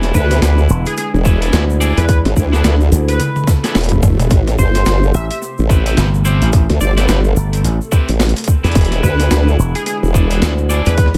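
Gritty and playful, this glitch hop excerpt rides a swung 4/4 groove built on a tight, layered electronic kick that sits up front alongside a wobbling, detuned formant-sweep bass thickened with chorus and tube saturation. A growly, punchy slap bass with an envelope filter joins at 0.7 seconds, adding a bright, direct snap to the low end. Above them, a pitched-down, overdriven boom bap sampler-style kit supplies hi-hat, a high-tuned snare and toms, with a drum fill from 3.2 to 4.3 seconds and a very quiet electronic swell arriving at 3.4 seconds, while a grainy egg shaker sits close and dry in the background. A twangy, slightly broken-up electric guitar plays stabs that pump with sidechain compression and trail off through analog delay, and an edgy, tearing sync lead carries the melody with vibrato, chorus and echo. Underneath it all, a very quiet, warbling, nostalgic lo-fi pad holds dark sustained chords through a harmony that moves from E7 to Am7 and back, in a dry, echo-heavy mix.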